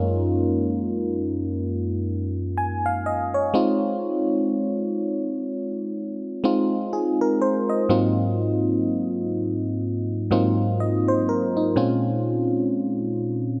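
A dark, warm production with light reverb sets a sensual, late-night mood for this brief R&B fragment at 62 BPM in 4/4, with a 16th-note swing and tuning at A4 = 443 Hz. A solo FM electric piano sits up front, its glassy, bell-like attack and noise layer decaying into a chorus shimmer as it spans Gb2 to Ab5. Over 13.6 seconds it moves through Gbmaj13, Fm7/Ab, Ab13 and Bbm9.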